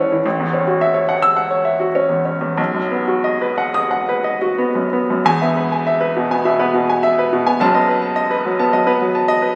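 In a rubato 4/4, this brief cut from a longer romantic character piece for solo upright piano sounds hopeful and lyrical. The piano's bright, woody tone sits up front with audible action noise and short sustain, and its harmony moves from F#m7/A and B to E at 5.2 seconds, then on to B7/F#, captured on a phone in the room with a moderate scoring-stage reverb and a dulled top end.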